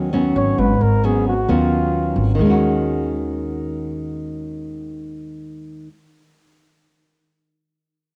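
Bossa nova at 133 BPM in Eb minor, this melancholic, intimate fragment of a longer piece sets an up-front, fingerpicked classical nylon-string guitar over a dark, woody pizzicato upright bass, moving from Abm7 to Ebm7 at 2.4 seconds. A mellow flugelhorn with a cassette-tape tint carries a brief jazz-style solo from 0.4 to 2.3 seconds, with light vibrato, scooped notes and a smooth top. Light reverb and a small-room ambience give it the close, homespun feel of a cassette recording.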